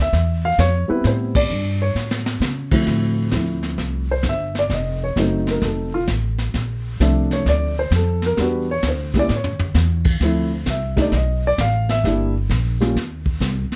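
Jazz piano trio excerpt in D minor at 131 BPM with a swung feel and a smoky, late-night mood, where a dark, mellow baby grand with audible action noise carries the melody and takes a solo from 2.9 seconds over chords moving from Dm9 through F7b9, Bbmaj9 and Em9, supported by woody, thumpy pizzicato upright bass and a vintage brush kit with dark cymbals and a punchy kick that adds short fills, with the whole band hitting an accent at 1.3 seconds, all in a dark production with light reverb.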